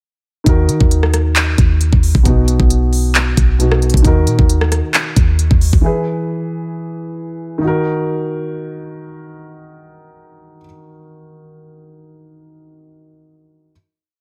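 Overdriven trap drums with a knocking kick, crisp hats, fast hi-hat rolls, handclaps and rim clicks drive this menacing, melancholic hip hop piece at 134 BPM in a half-time feel, joined by a deep, boomy 808-style bass whose long sub-bass notes follow the kick with pitch slides until 5.8 seconds, while a dark, boxy concert grand piano with audible action noise repeats held, spread chords like a sampled loop in Eb phrygian, moving through Ebm, B and E to a final Ebm chord at 7.6 seconds and ringing on alone to 13.7 seconds.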